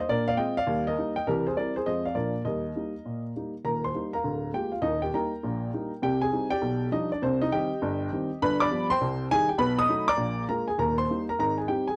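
A solo upright piano opens this short stride jazz passage, cut from a longer piece, swinging at 202 BPM in Eb major with an exuberant mood. The piano sits up front with a woody, intimate tone, and the audible action noise of the instrument adds a natural, close-up character. It spans the keyboard from a deep D1 to a bright D#6, moving through turns like Bb9, C7 and Fm before settling on Eb. After 3.7 seconds the passage shifts into a second section that leans into C minor, passing through G7, B7 and Bb7 before resolving to Eb and landing on Abmaj7. A light reverb softens the edges of an otherwise dry, close 1970s-style studio sound.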